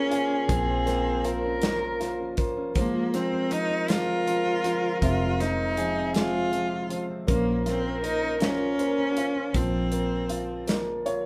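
A clear, bowed cello carries the melody up front with smooth, even vibrato in this melancholic, dramatic six-eight pop ballad, cut from a longer piece, while a jazz-style soprano saxophone with subtone and light vibrato adds a second line until 9.6 seconds over chords moving from Bbmadd9 to Fm and back. A woody, intimate upright piano with audible action noise and long sustain accompanies, and a full-bodied jumbo acoustic guitar, plugged in and fingerpicked, plays arpeggios in the background until 10.1 seconds. A dark, round, foam-muted electric bass and an up-front acoustic kit with tight kick, medium-tuned snare and hi-hat anchor the band, which plays live in one room with moderate reverb before a piano fill at 10.7 seconds.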